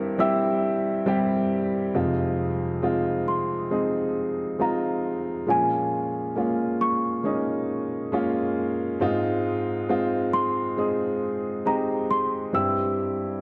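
A warm, up-front baby grand piano with long sustain accompanies from the first moment, moving through C/G, Fm7 and Bbm7, while a delicate, bell-like and slightly out-of-tune celesta carries the melody above it in this melancholic, longing pop fragment in F minor at 68 BPM, set in a moderate concert-hall reverb with a dark, warm production.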